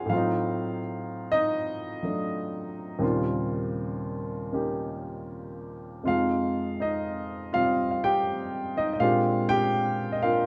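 An upright piano opens alone on an Adim7 chord, then moves through Eb13, Fm7 and Bb13 in a relaxed, sophisticated solo jazz passage at 81 BPM in 4/4, swung and loosely rubato in Eb mixolydian. The woody piano sits up front with a long, natural sustain, ranging from Eb2 to Ab5. A moderate club reverb and a dark, warm production frame this short passage, cut from a longer piece.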